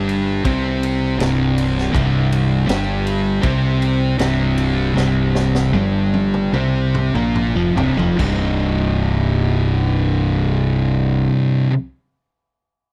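A dry, close 1970s-style studio sound frames this hypnotic, heavy stoner and doom metal excerpt in C minor at 70-81 BPM in a straight 4/4, where two thick fuzz guitars drive a riff, one up front and one dark in the background, over a growly, punchy fingered bass with overdrive; a double-tracked, compressed overdriven electric guitar joins in the background at 1.9 seconds as the tempo slows, the raw, gritty garage drum kit with its boomy kick and high-tuned snare plays a fill from 4.9 seconds, and the harmony shifts from C5 to Cm at 8.2 seconds.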